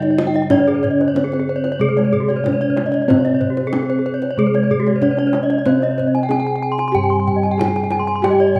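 In a straight 4/4 at 93 BPM, this brilliant, hypnotic Balinese gamelan excerpt in C pelog sets a mellow, padded-mallet bronze metallophone melody over a wooden-mallet metallophone accompaniment and round, beating bossed gongs in the bass, while two metallophone arpeggio lines shimmer above, one close and dry, the other bright and horn-struck, and a tight, vintage-sounding kendang sits quietly underneath, all ringing through a moderate recital-hall reverb.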